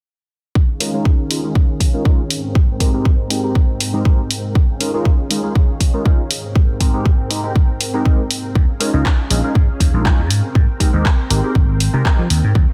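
Filtered disco house at 120 BPM in Ab major, this sunny, feel-good excerpt swings lightly on the 16ths as lush, slow-attack string machine chords with ensemble chorus and a punchy, up-front electronic kick start at 0.6 seconds, joined by handclaps and bright hats from the house kit. A funky, warbling, detuned sawtooth polysynth comp with phaser and chorus rides the same pumping, low-pass-filtered sweep, while the harmony alternates between Eb9sus4 and Abmaj9. At 8.6 seconds a growly, amped vintage slap bass enters up front, all within light digital reverb and a dense, heavily limited master.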